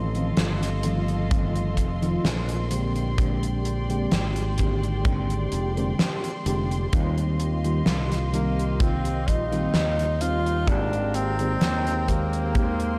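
Faded and nostalgic, this vaporwave excerpt drifts at a slow 64 BPM in Eb major, with a light swing and a dreamy mix soaked in a huge ambient reverb. A mellow FM electric piano carries the accompaniment from the start, its round, full-bodied tone thickened by analog chorus and a diffuse ambient delay. Alongside it, a dark chamber string section holds sustained bowed chords with light vibrato and a gritty 12-bit sampler edge, while a fingered electric bass sits up front, bright and growly through tube saturation. A gated 80s drum kit brings a fat snare and hi-hat in a big, airy room, joined at 1.3 seconds by a tight, polished kick drum. The harmony moves through F7, Bb13, Eb69 and Abmaj9, and at 8.3 seconds a close-miked tenor saxophone enters with a jazz-style solo melody, its scooped notes and soft attack trailed by tape echo.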